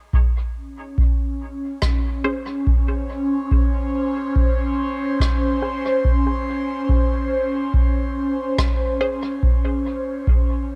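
Lightly reverberant and spacious, this meditative ambient dub fragment opens with a dry, deep, tape-warm electronic kick drum up front, joined at 0.9 seconds by an airy, breathy, detuned pad holding sustained chords through chorus and phaser, with a mid-forward, rolled-off rim click entering at 1.8 seconds and a muted, wave-folded chord stab with a filter pluck arriving at 2.2 seconds, both trailing dub echo.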